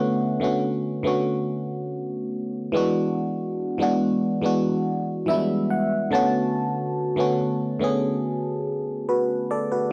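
An FM electric piano carries this moody, sensual R&B fragment on its own, sitting up front with a glassy, bell-like attack that decays after each note, over a layer of noise. Chorus and phaser give the keys a shimmering, shifting colour, and a cassette tape character adds a worn, homespun grain. The harmony moves from Bm9 to E9 at 2.7 seconds and returns to Bm9 at 6.1 seconds, ranging from D3 up to A5 at an unhurried, straight pace. A short fill from the piano between 4.8 and 6.5 seconds stands out as the main flourish. The home cassette recording sits in a wet studio reverb with a short tail, giving an intimate, late-night feel to this brief section cut from a longer piece.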